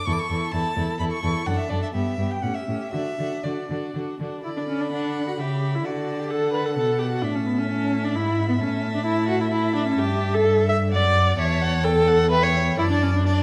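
Spirited and graceful, this quick classical-period string quartet movement in D major moves in 3/4 at 128 BPM with a rubato feel, and is cut from a longer piece. The first violin sings the melody with smooth, even vibrato above the focused second violin's supporting line, while the up-front viola accompaniment and the cello's bowed bass sit louder in the balance, the cello entering at 0.1 s. All four players share a rich bowed tone, set in a wet recital-hall reverb of 1.6 s within a dark, warm production, with an opening section giving way to a second at 4.4 s.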